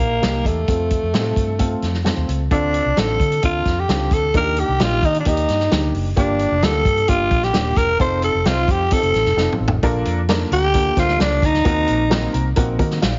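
Uptempo 1960s-style soul in Bb major at 131 BPM, this danceable, uplifting excerpt features a raspy, growling tenor saxophone melody out front over a woody, slightly detuned upright piano, a round, foam-muted fingered electric bass and a punchy vintage drum kit, with a drum fill at 9.4 seconds and a piano fill closing from 12.1 seconds, all heard through a heavily compressed radio sound with vinyl crackle and light reverb.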